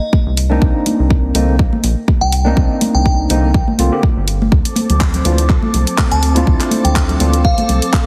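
A punchy, up-front electronic kick drives this smooth, hypnotic deep house excerpt at 123 BPM with a light 16th-note swing, joined by a rubbery, bouncy square bass, a tape-warm house kit of handclaps and hi-hat re-recorded in a large room, and vintage, band-limited congas pumping in the background. Barky, overdriven tine electric piano stabs run through a combo amp with tape echo, while a crystalline FM bell melody glints on top with chorus, 12-bit sampler grit and echo over a Cm9 chord. At 4.5 seconds the harmony moves to Dm9 as a hollow, flute-like pad and a silky string machine enter, all set in light digital ambience with a heavily compressed, radio-like sheen.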